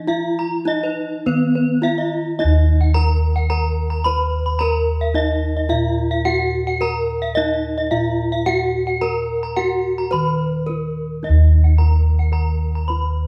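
Up front, bossed bronze gongs struck with padded beaters lay down a round, mellow, softly beating bass beneath this brilliant, hypnotic Balinese gamelan passage in Eb pelog, moving at 109 BPM in a straight 4/4. A bronze metallophone played with a wooden mallet carries the melody with a ringing tone and the shimmering beats of paired tuning, while a second metallophone struck with a horn mallet spins bright, airy arpeggios higher up from 0.1 seconds. The ensemble plays live in a wet stone room, and a short break at 10.4 seconds interrupts this section cut from a longer piece.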